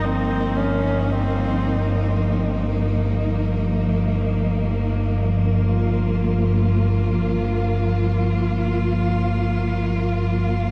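Opening on a bright, husky horsehead fiddle melody with vibrato and portamento, heard only until 2.1 seconds over a smooth, up-front cello section holding sustained Cm/G chords and a deep, rumbling, detuned drone with ring modulation, this ominous, desolate dark ambient piece in free time, cut from a longer work, hangs in a vast, echoing cathedral reverb, with shimmer reverb on the fiddle and cellos and a diffuse ambient delay trailing the fiddle.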